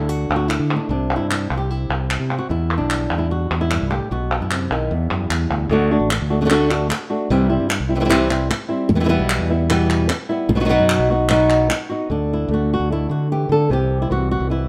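A straight 4/4 pulse at 150 BPM drives this fiery, mournful flamenco passage, cut from a longer piece and tuned to A4 = 441 Hz. Up front, a fingerpicked acoustic flamenco guitar carries the melody from E2 to A4, its warm tone set in a plate reverb. A bright, direct fingered electric bass sits close beside it, holding the low end from A1 to D3. Crisp, compressed palmas hand claps with a saturated edge join at 0.3 s and drop out at 11.9 s, leaving guitar and bass to finish together. The harmony moves through D5, C, Em and B, returning to D5 and C near the close, and the whole group sits in a moderate large studio room.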